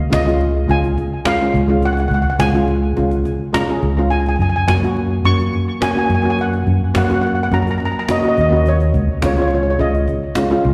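A straight, festive calypso groove in 4/4 carries this carefree snippet from a longer live gig heard through the venue's PA in a recital hall, where a dark, smooth lead steel pan played with medium rubber sticks carries the melody over a shimmering double-seconds pan accompaniment, both treated with plate reverb and slapback echo and the lead also with tape echo, while a growly, amped fingered electric bass sits up front and a cajon struck with hard hands adds woody tones with faint snares and its own slapback echo as the chords move from Db to Gbadd9 at 4.4 seconds and Dbadd9 at 8.9 seconds.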